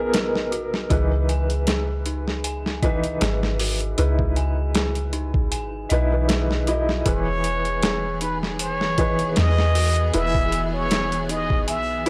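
Trip hop with a smoky, cinematic mood, this excerpt pairs a felt-muted upright piano's soft, intimate chords, treated with tremolo and tape echo, with an eerie, inharmonic synth bell arpeggiating through chorus and echo, over a round, deep 808-style bass and a gritty, pitched-down boom bap kit with a thumpy kick up front, before a lush bowed string section and a bright, plunger-muted trumpet carrying a jazz-style melody both arrive around 7 seconds in a small, dry room.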